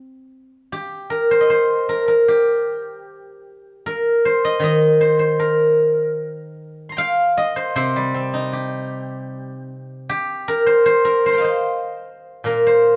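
A lone steel-string zither sounds from the very start, ringing and silvery, placed up front in a light reverb. This brief solo in the Chinese traditional style carries a contemplative, longing mood. The phrasing is rubato, so the two-beat metre breathes freely rather than keeping strict time. Played with fingerpicks, the zither spans from its deep lower strings up into a bright high register, giving the acoustic tone both body and sparkle. The zither plays alone throughout the 13.0 seconds of this fragment cut from a longer piece.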